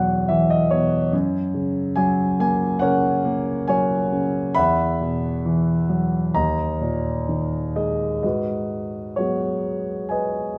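Flexible rubato in a slow 4/4 carries this brief, wistful classical fragment, cut from a longer piece, for solo concert grand piano. The piano is dark and boxy with a deep bass, sitting up front in a moderate stage reverb. A short fill opens the first 1.1 seconds, suspended and added-ninth chords drift reflectively beneath the melody, and at 8.2 seconds the music settles onto a G# minor seventh as a new section begins.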